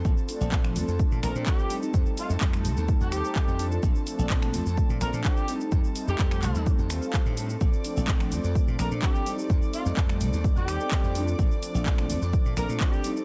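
Joyful and funky, this filtered disco house excerpt pairs a punchy, overdriven electronic kick up front with an overdriven house kit of bright hi-hats, shaker, finger snaps and handclaps, while a bright slap bass, a dark, clean electric guitar riff, sustained chords from a distant chamber violin section carrying 12-bit sampler grit, and round, detuned synth brass with chorus and phaser all pump to the sidechain as a mellow, roomy horn section takes the melody from 1.2 seconds over Bbmaj9 and F9 chords.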